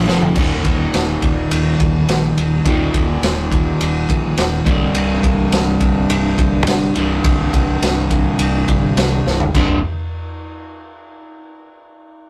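Driving and confident, this classic rock excerpt moves at 104 BPM in a straight 4/4, cut from a longer piece, with a crunchy, double-tracked overdriven guitar riff sitting up front over a growling, bright fingered electric bass pushed through overdrive. A raw garage drum kit in a small, pumping room drives it along with a punchy kick, medium-tuned snare, ride, crash and toms, its gritty, saturated sound rolled off at the top, with drum fills at 0.1 and 9.3 seconds. The rough rehearsal-room recording carries tube saturation and light reverb, and the chords move from Eb5 to C5 at 4.7 seconds.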